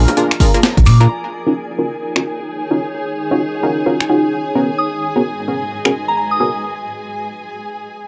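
An excerpt of skippy, bouncy two-step UK garage at 130 BPM in Eb minor, swung on the sixteenths, where punchy, gritty 12-bit chord stabs with chorus and delay ride over a compressed, tape-warm breakbeat kit of bongos, finger snaps, hi-hat and snare. A hollow organ-like FM bass, tube shaker and analog electronic kick drop out after about a second, while a soft, pure synth bell melody floats above a veiled con sordino violin section and a cloudy granular pad that pump underneath until a break at 6.6 seconds leaves the violins sustaining alone.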